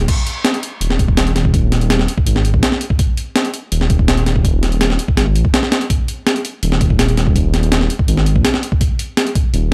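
A deep, rumbling detuned sawtooth bass opens this raw, nostalgic drum and bass and jungle drop cut from a longer piece, joined almost at once by a compressed, sampler-style breakbeat kit with a thumpy kick, high-tuned snare, hi-hat and crash cymbal set in studio reverb, both parts sitting up front in a dry hardware recording coloured by transformer saturation.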